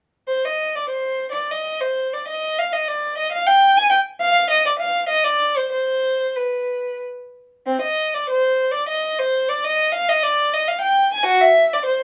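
A rich, smooth solo violin, bowed with vibrato and placed up front, plays alone from 0.3 to 12.0 seconds in this grave, introspective fragment of a baroque-style suite movement in triple metre, moving freely with rubato between C4 and Ab5 and captured by close, detailed microphones in light reverb.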